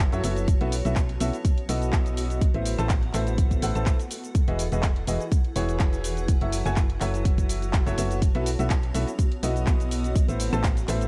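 A dry mix opens this feel-good, uplifting piano house cut from a longer piece, set at 124 BPM in 4/4 with a light 53% swing on the 16ths and tuned to A4 = 442 Hz. A clear, worn grand piano riff with long sustain carries gritty 12-bit sampler character, digital delay and sidechain pumping, while a round, dark FM bass pumps up front beside a layered electronic kick that drops out at 10.7 s, and a house kit adds handclaps, shaker and bright hats. Behind them, a blurred, detuned granular pad drifts with its own reverb over chords moving from B7sus4 through Amadd9, Emaj9 and F#m7.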